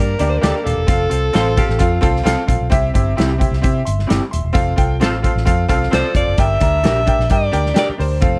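A straight 4/4 pulse at 131 BPM drives this urgent, uptempo 1960s-style soul fragment in G dorian, where a natural country drum kit with punchy kick and medium-tuned snare and a dark, foam-muted fingered electric bass carry the Gm, F and C changes. A bright, woody, slightly detuned upright piano sits up front with audible action noise and adds a fill at 1.8 seconds. Background accents come from an electric guitar through a small old amp playing slightly broken-up, lo-fi stabs and a twangy clean electric guitar with a brief riff. A tight vintage horn section adds a slapback-echoed second line around a band accent at 4.6 seconds, while a breathy, subtoned alto saxophone with light vibrato and slapback echo states the melody at the start and returns at 5.9 seconds, all in a small room.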